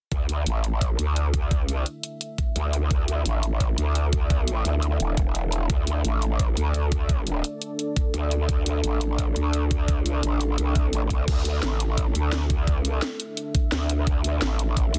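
Dark technical drum and bass in a tense, futuristic mood, cut from a longer piece, where a saturated, wobbling growl bass and an overdriven, knocking electronic kick sit up front over a layered kit of cracking snare, hi-hat and crash cymbal, while a deep, warbling, detuned ambient pad with chorus, its own reverb and sidechain pumping enters at 1.2 seconds beneath a dense, heavily limited modern master with little room sound.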